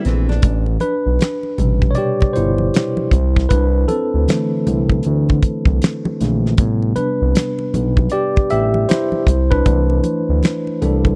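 A dry, close 1970s-style studio sound frames this late-night, introspective R&B and neo-soul excerpt in A minor, moving at 78 BPM with a 16th-note swing as the chords alternate between Am9 and C69. A clean tine electric piano, heard through built-in speakers, takes the solo throughout, over a damped 70s drum kit with a fat snare, tight kick, rolled-off top and finger snaps, and a smooth sawtooth-and-square synth bass that glides with portamento up front. A full-bodied, fingerpicked nylon-string guitar appears only in the first 0.7 seconds, while bright, soft-handed congas sit in the background.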